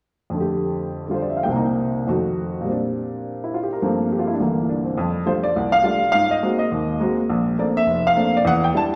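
A woody, slightly detuned upright piano plays alone up front from 0.3 s to 8.9 s in this sophisticated, swinging jazz passage cut from a longer piece, its vintage tone spanning F1 to A5 through rich extended chords as a wet recital-hall reverb blooms around it.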